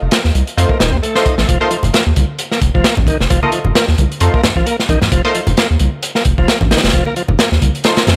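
A swung sixteenth-note breakbeat drives this gritty, funky excerpt, its crunchy acoustic kit sitting up front with a tight kick, a medium-tuned snare, hi-hat and a rolled-off top, while a thick, saturated sine sub bass holds down the low end. A shouting tonewheel organ riff, lightly overdriven through a fast rotary speaker with tube saturation, a low-pass filter and tape echo, is joined by nasal, band-passed sawtooth chord stabs colored by chorus, phaser and tape echo. Close, dry congas with hard hands ring in at 1.8 seconds, and the kick drops out at 7.8 seconds, all within a small room ambience.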